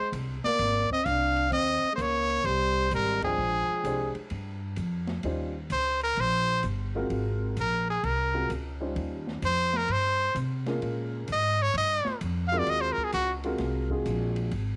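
A brilliant, forceful trumpet with light vibrato and scooped notes leads this relaxed small-group swing and bop fragment, shadowed at first by a veiled, bucket-muted trombone that drops out at 4.1 seconds, just after a band accent and the entrance of an intimate, slightly detuned upright piano with audible action noise. A woody, growly pizzicato upright bass sits up front, and a dark, smooth drum kit with a high-tuned snare and punchy kick swings underneath. From 5.2 seconds the trumpet takes a solo over the rhythm section in a light, small-room reverb.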